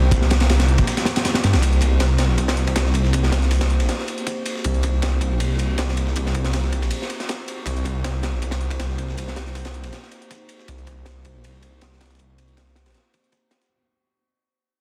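Raw and nostalgic, this drum and bass cut with a jungle edge opens on a drop over a Cm7 chord, then fades out from 1.6 seconds onward. A thick, menacing detuned saw bass sits up front beside a crunchy, saturated breakbeat kit with a punchy kick, high-tuned snare and dark ride cymbal. Further back, a dusty soul sampler-style kit adds compressed hi-hat and snare, while a warbling, lo-fi tape-like pad holds sustained chords colored by chorus and built-in reverb over a dense master with vinyl crackle.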